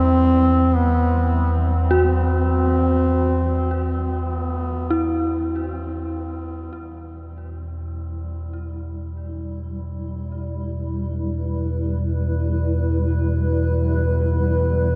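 Dark ambient drone in free time and E minor, cavernous and dark, cut from a longer piece and bathed in a huge, wet reverb with a tail of 7.8 s. A deep, rumbling drone and a blurred, granular cloud pad sustain throughout, while a mellow duduk with scooped, folk-style notes and delay sings a brief solo line up front until 4.3 s. From 1.9 s an eerie, inharmonic synth bell with chorus, tremolo and delay adds arpeggios as the harmony shifts from C/E to Em at 6.7 s.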